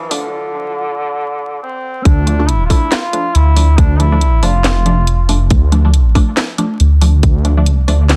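A dense, heavily limited mix dusted with vinyl crackle and light reverb carries this brooding, meditative deep dubstep piece in D minor at 139 BPM, swung and felt in half-time. A distant, roomy duduk sings a folk-style melody with vibrato and scooped notes through dub echo. It is joined from the start by muted, mellow dub chord stabs with phaser and a tape-warm garage kit of handclaps, hi-hat and cracking snare as a filter sweep builds; at 2.1 seconds the drop lands with a tight, up-front electronic kick and a deep, rumbling detuned saw bass, and the duduk falls away at 5.3 seconds.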